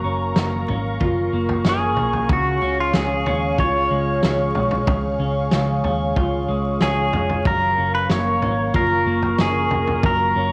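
Dream pop with a floating, dreamy mood in a straight 4/4, cut from a longer piece and steeped in the sound of a home cassette recording and vinyl crackle. A swirling, detuned sawtooth pad with phaser, chorus and plate reverb holds sustained chords over a dark, foam-muted picked bass, while a clean electric guitar spins arpeggios through subtle chorus and analog delay, and a loose indie kit with a fat snare, punchy kick and toms enters at 0.4 s, its sound gritty and rolled off at the top. At 1.7 s an up-front, twangy pedal steel played with fingerpicks takes the melody, gliding with slide and volume swells through analog delay as the harmony moves from F#maj7 to C# and back.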